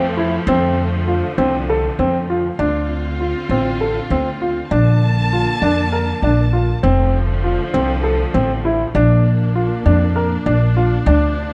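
A woody, thumpy pizzicato upright bass sits up front in this restless yet hopeful piece of contemporary chamber music in 7/8, cut from a longer work. A baby grand piano with a natural, short-sustained tone plays arpeggios near the front, while a lush bowed string section with vibrato holds sustained chords more softly, all set in light reverb. The harmony moves from F6 to Dm7 at 2.6 seconds, then through Bbmaj7 and back to F6 before arriving on Bb at 9.0 seconds.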